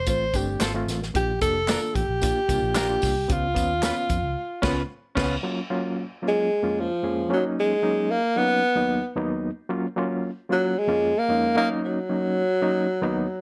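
A light reverb lends a gentle sense of space to this uplifting, joyful excerpt of uptempo 1960s-style soul, moving at 113 BPM in a straight 4/4. A breathy tenor saxophone carries the melody up front throughout, mellow and smooth-topped, with vibrato, scooped notes and a slapback echo. An overdriven reed electric piano adds gritty, barky accompaniment through a combo amp with a fast tremolo, while a semi-hollow electric guitar contributes clean, compressed stabs in the opening stretch. Also in that opening stretch, a dark, foam-muted fingered bass, a roomy soul drum kit with dark cymbals and a tight kick, and a close blend of tambourine, egg shaker and group handclaps give the groove its drive, and the band hits an accent that ends at 5.4 s. From there the music settles into F# major, with the saxophone and electric piano alone over chords such as F#maj7, A#m7/E# and D#m7.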